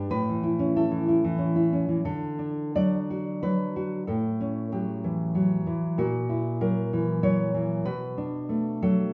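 A rubato feel in 3/4 at 94 BPM carries this nostalgic, romantic piece for solo nylon-string guitar in D major, tuned to A4 = 445 Hz and cut from a longer work. The guitar sits up front with a dark, full-bodied, thumb-plucked tone and audible finger squeak, moving from A to D at 2.1 seconds, then through A6, F#7/A#, and Bm7 by 7.9 seconds. A moderate recital-hall reverb from a church or concert hall surrounds the playing.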